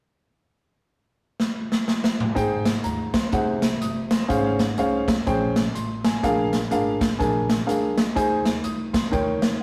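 Uptempo gospel with a jubilant, uplifting swing, cut from a longer piece, where an airy big-band drum kit with a punchy kick opens with a fill from 1.4 s before an intimate upright piano, its action noise audible, steps up front at 2.4 s over a dark, woody pizzicato upright bass in the background, all in a rough rehearsal-room sound with tube saturation.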